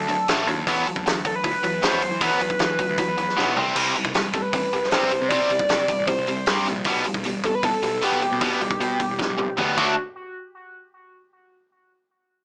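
Indie rock with a carefree, wistful mood, cut from a longer piece, built on a bright, double-tracked overdriven guitar riff and a screaming, sawtooth-and-pulse synth lead that carries the melody through distortion, phaser, vibrato and tape echo. Beneath them, a fuzz-laden picked electric bass and a loose, punchy indie drum kit with dark cymbals and a gritty, saturated edge drive the chords from D through Esus2, C5 and G. Drum fills land at 3.4 and 9.2 seconds, and the whole mix sits in light reverb with a small-speaker character.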